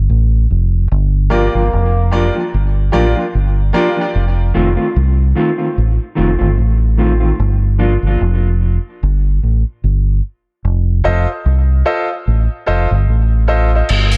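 A dark, warm studio sound frames this meditative, hypnotic dub reggae excerpt, with a round, deep fingered electric bass sitting up front through its whole length over a lightly swung feel. From 1.3 seconds, a mellow, clean electric guitar and clear grand piano stabs drift through tape echo over chords moving from Gm7 to F7 and G7(no3), while a bright trombone with light vibrato makes a brief echoed appearance. A vintage drum kit with dark cymbals arrives only at 13.9 seconds, its crash and hi-hat closing the clip.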